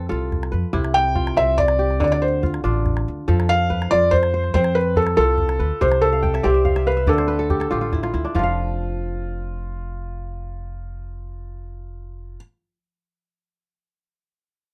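Hypnotic and joyful, this cut from a longer West African string and xylophone piece moves at 94 BPM in a straight 12/8, setting an intimate felt-muted upright piano melody with audible action noise up front over mellow, ringing fingerpicked kora arpeggios that break into a fill at 6.0 seconds, a woody pizzicato upright bass with steel strings, and a small, close calabash that drops out at 8.6 seconds, all in a rough home demo mix with light reverb.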